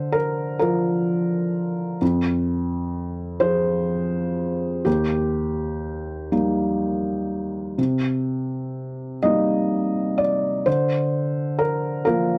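In a slow 6/8 at 42 beats per minute, counted in dotted quarters, the pulse falls unevenly and stretches with a rubato feel. This neoclassical minimalist piano fragment, cut from a longer piece, carries a reflective, melancholic mood across its 12.4 seconds. A felt-muted upright piano plays alone throughout, spanning Eb2 to Eb5 with a soft, mellow and intimate tone, and its action noise is audible up front in the sound. The harmony moves from Bb/D through Fm, Eb and Cm7 before returning to Bb/D at 10.7 seconds. The recording is dry and close in a 1970s studio style, with light reverb and tuning set to A4 = 438 Hz, giving the instrument a natural presence.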